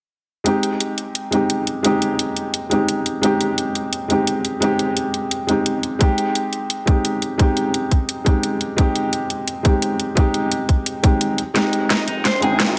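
A light reverb and digital ambience surround this soulful, rolling slice of liquid drum and bass at 173 BPM, cut from a longer piece. A felt-muted upright piano sits up front with a soft, boxy, intimate tone, its action noise audible and its short notes trailing dub echo over an Abmaj7 chord. An overdriven drum and bass kit with a cracking snare and bright hats drives from the start, and a tight, overdriven electronic kick drum joins at 6.0 seconds. At 11.6 seconds the harmony shifts to Fm9 as a build-up and drum fill arrive, and a dark, slightly broken-up picked electric guitar plays arpeggios through a low-pass filter sweep and dub echo. A very quiet, deep, rumbling detuned saw bass enters alongside it, and a faint electronic riser comes in at 12.1 seconds before the clip ends.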